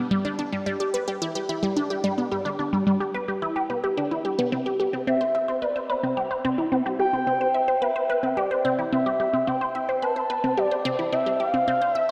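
Dark, plate-washed production frames this expansive, hypnotic ambient excerpt, where a juicy, squelchy blip pluck with phaser, shimmer reverb and delay sits bright and up front with a resonant riff over G6 and Cadd9 harmony, joined at 5.1 seconds by a smooth, expressive synth lead with chorus, vibrato and a soft, sustained tone carrying the melody.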